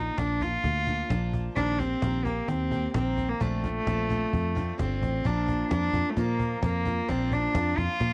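A home recording on cassette with light reverb, this short cut from a longer indie folk piece carries an uplifting, anthemic spirit within a building arrangement. At 130 BPM in a straight 4/4 and Bb major, a single bowed cello takes the melody up front, its period-style gut-string tone rich, reedy and close. Beneath it, a picked jumbo steel-string acoustic guitar supplies full-bodied accompaniment with a cassette tape color, while a fingered electric bass sounds dark and round, direct and amped with a foam-muted touch. A snappy cajon with snares enters at 0.2 s, played with hard hands from the background. The harmony moves from Bb through Cm/Bb and Dm7/Bb, then lands back on Bb as a new section begins at 5.2 s.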